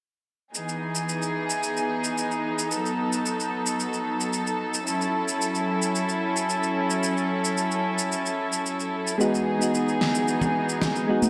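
Sunset chillout at 111 BPM in a straight 4/4, this smooth, warm excerpt is cut from a longer piece and moves through Emaj7, B7 and F#m7 before returning to Emaj7. A studio string section carries sustained chords from 0.5 s, its bowed ensemble tone earthy and lightly vibrato-touched, with a biting edge under a smooth top, placed up front. Electronic shaker and a fat, layered snare drum run alongside, their tape-warm sound re-recorded in a small room and washed in gated reverb. Soft, round synth keys resembling an electric piano enter at 9.2 s with a gentle, mellow, decaying tone, shimmering with chorus and delay. Congas join at 10.4 s, high-tuned and damped, with hard hands, a thin skin and a compressed, saturated bite. A wet plate reverb and bright 1980s-style digital production give the whole a glossy, spacious sheen.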